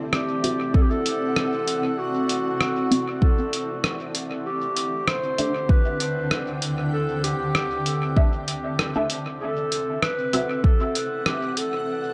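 A deep, up-front electronic kick enters at 0.7 seconds under muffled, pitched-down sampler hi-hat and rim click with dub echo, driving a hazy, peaceful ambient dub excerpt at 97 BPM in 4/4 with a light 16th-note swing in D mixolydian, where a cloudy, evolving granular pad sustains chords moving from D9 to C69/D at 4.5 seconds and back, muted detuned chord stabs pluck through phaser, chorus, cassette-tape grit and dub echo, and a distant, roomy clarinet carries a classical-style solo melody with echo, all bathed in a moderate spring reverb.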